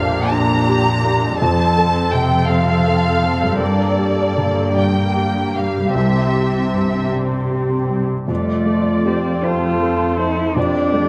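In a rubato 6/8 at roughly 50-55 BPM, this hopeful, moving cinematic film score in F major opens with muted violins carrying a lush, veiled melody over muted violas, a natural-toned baby grand piano, a ringing fingerpicked harp in the background and a close, dark cello section holding the bass. The violins stop at 7.1 seconds, and at 8.3 seconds a single muted cello takes up the melody up front with vibrato as the harmony settles on Fadd9. A moderate scoring-stage reverb surrounds the close, detailed sound, which carries some lossy compression artefacts in this brief cut from a longer piece.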